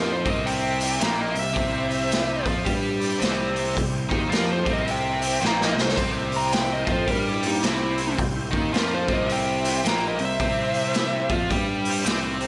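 Soaked in a lush hall reverb with a big arena sound, this raunchy, gritty, swung blues rock and southern rock fragment sets a compressed fuzz lead guitar melody over a very quiet, dark second guitar line, a biting, double-tracked overdriven riff with slapback echo, punchy fuzz bass, faint sustained chords from an overdriven tonewheel organ through a slow rotary speaker, and a raw, boomy garage drum kit that enters at 0.3 s and plays a fill at 5.4 s.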